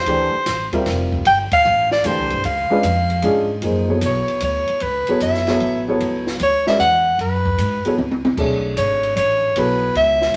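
The soprano saxophone opens this short modal jazz excerpt with a clear, close-miked line over pizzicato upright bass, the pair sounding from the very start at a swung 152 BPM in 3/4. A baby grand piano and a compact cocktail drum kit join a moment later, the piano's tone warm and up front, the kit dry and natural with dark cymbals, a high-tuned snare and a punchy kick. The mood is spiritual and searching, moving from G dorian and a G9sus4 chord into F# minor at 3.6 s, where an F#m11 harmony settles in. The saxophone leads as soloist with light vibrato, while the woody bass holds down the low end and the piano supplies accompaniment. A band accent lands at 1.5 s, and a drum fill at 8.0 s leads into a Bm11 chord, all set in a wet studio reverb.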